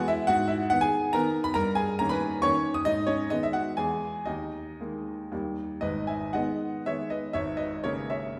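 A clear baby grand piano opens this brief fragment of a romantic triple-time dance, heard entirely on its own from the first moment to 8.4 seconds. The mood is capricious and wistful, with dotted rhythms and a rubato feel that lets the pulse bend freely. The instrument sounds intimate and up front, with a natural tone, short sustain and audible action noise. Its range stretches from deep bass notes up into the high treble, moving through minor harmonies, dominant chords and a suspended chord before settling into a new passage at 5.8 seconds. A wet recital hall reverb surrounds the playing, giving the sense of a church or concert hall around the instrument. The recording is cut from a longer piece.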